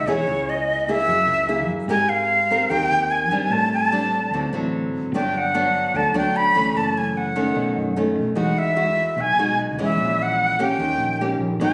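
Sunny and romantic, this bossa nova fragment moves at 148 BPM in a straight 4/4, tuned slightly flat to A4 = 436 Hz, with an airy jazz flute up front carrying the melody with soft-edged vibrato and expressive phrasing. A fingerpicked nylon-string guitar, classical in tone and also close in the mix, supplies the accompaniment through lush seventh and ninth chords from C#m7 to D#7, while a woody fretless electric bass sits lower in level with a round, growly, hollow-body voice. A moderate plate reverb adds a 2.3-second tail, and the sound was captured on a phone in the room and then compressed.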